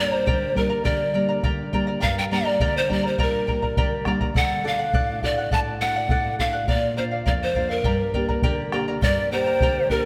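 Wistful and melancholic, this short Andean folk passage in 2/4 sets a mellow bamboo pan flute up front with a hollow, vibrato-laden melody, its crisp chiff and rolled-off highs carrying over fingerpicked accompaniment from a shimmering, bright charango with doubled strings and a warm, classical nylon-string guitar. A deep, dark bombo joins at 0.3 s as the harmony moves from G minor through D and Bb back to G minor. At 9.0 s a large wooden quena slips in with a breathy, tongued second line that sounds slightly unsteady, all of it bathed in the lush reverb of a concert hall.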